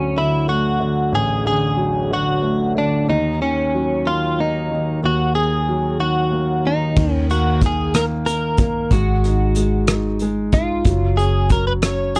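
A clean electric guitar and a clear grand piano open this short cut from a heartfelt, romantic pop ballad in six-eight metre. The guitar carries the melody up front, recorded direct with a compressed, picked tone and a shimmer of analog chorus. The piano accompanies close by, intimate and natural, with long sustain and audible action noise beneath the keys. At 7.0 s the arrangement fills out as a vintage muted fingered bass enters, dark, amped and round with a foam-muted thud. A loose indie drum kit arrives with it, its punchy kick, hi-hat, rim click and crash cymbal set in a pumping studio room. Light reverb surrounds the parts as the harmony moves from D and D#m to power chords before the excerpt breaks off at 12.2 s.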